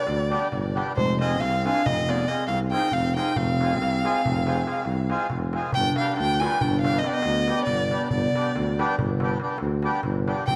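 Balkan folk in a wedding-band style, bittersweet and restless, moving in a straight 11/8 at 278 BPM counted in eighths, with the harmony shifting from G to F minor and returning to G when the second section begins at 5.7 seconds. A rich, up-front bowed violin carries the melody with smooth vibrato, and a bright clarinet enters at 1.0 seconds with a classical second line. A reedy, full accordion supplies accompaniment, a mellow tuba holds the bass from a roomy distance, and a crisp metal-shell darbuka sounds from afar, all set in a moderate scoring-stage reverb in this excerpt cut from a longer piece.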